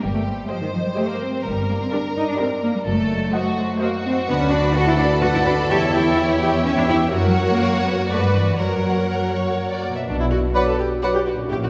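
A rich, smooth violin section carries the melody over a lush second violin line, ringing fingerpicked harp arpeggios, a focused double bass section, a smooth-topped cello section and a clear viola section in this playful, whimsical, quirky and magical film cue in 3/4 at 126 BPM, which settles into B minor from 4.3 s; a mellow French horn section adds sustained chords at 10.1 s, and an airy flute, clarinet, oboe and bassoon touch in briefly at 10.6 s, the ensemble heard from further back in a wet scoring-stage reverb in this fragment cut from a longer piece.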